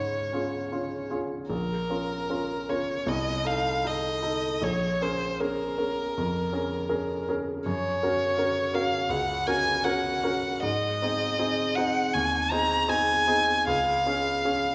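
Rubato and unevenly paced at about 79 BPM in 4/4, this lyrical, tender romantic classical duo, cut from a longer piece and tuned to A4 = 441 Hz, sets a single bowed violin with a rich, smooth, even tone and vibrato singing the melody up front between Bb4 and Bb5 over a clear, natural baby grand piano accompaniment with short sustain, as the harmony moves from Db through Bbm, Adim/C, Bbm7, Gb and Ab back to Db inside the wet reverb of a recital hall.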